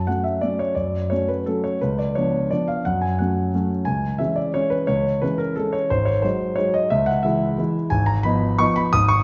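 A solo concert grand piano carries this elegant, playful classical waltz, its intimate tone marked by deep bass, a short sustain and audible action noise. The tempo sits at 176 BPM in 3/4, though the beats are uneven and the rubato lends the dance a loose, breathing lilt. The piano spans G#1 to Eb6 and sounds up front and natural, while a wet recital hall reverb with a 1.6-second decay places the listener further back in the room. The harmony moves from F#m through C#7b9 and back, shifts to C#m with a G#7 at 5.9 seconds, and closes on Fm7b5/Ab at 7.9 seconds. Tuned to A4 = 439 Hz, this 9.2-second passage is cut from a longer piece.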